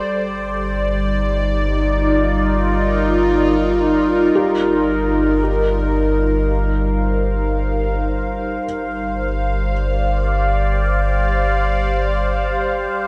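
An evolving, morphing wavetable pad opens this reflective, spacious ambient excerpt in free time, its detuned unison chords sitting bright and up front through phaser and built-in reverb, with a deep, round sine sub bass sustaining on G1 beneath it from 0.1 seconds. From 4.4 to 8.7 seconds a felt-muted upright piano adds soft, intimate arpeggios through delay in the background, its action noise audible, while the harmony moves from Eb69/G to Bb69/G at 8.6 seconds. A huge, wet ambient reverb with a 7.2-second tail bathes the whole dark, warm mix, and the excerpt is cut from a longer piece.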